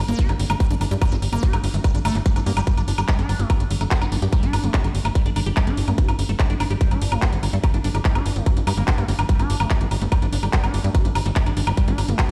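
Psychedelic trance with a psychedelic, alien mood, cut from a longer piece and driving in a straight four-four over G minor. An up-front electronic kick, tight and layered, anchors the groove beside a tight sequencer bass that sits low and forward, its punchy sawtooth and square-wave tone plucked by a fast-attack filter and colored with ring modulation. Higher up, a liquid acid bass riff squelches with a resonant, smooth square-wave voice, treated with phaser, digital delay and sidechain pumping, and mixed further back. A techno drum kit adds handclaps, woodblock and metallic hi-hats, re-recorded in a small room. The whole track sounds as if played on a big sound system in a bare stone room, giving it a light stone-room reverb.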